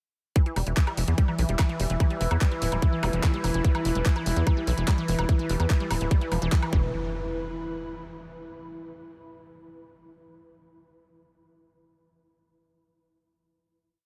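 An up-front, overdriven electronic kick drives this short, hypnotic and intense psychedelic trance piece at 146 BPM in E minor, pounding four-on-the-floor through a drop from 0.4 to 6.9 seconds alongside a tight, punchy sawtooth sequencer bass in galloping sixteenths and overdriven programmed hats, claps and woodblock. A lush, detuned unison pluck plays an accented acid riff on a 3-step loop that drifts against the bar, while a resonant drone with moving overtones holds a sustained high note in the background and a warbling, lo-fi tape-like pad with chorus and phaser carries slowly shifting chords, all pumping to the sidechain. Very quiet electronic zaps and impacts mark transitions, and the pad lingers into a final note that rings out to about 8.5 seconds in a dreamy mix soaked in huge ambient reverb.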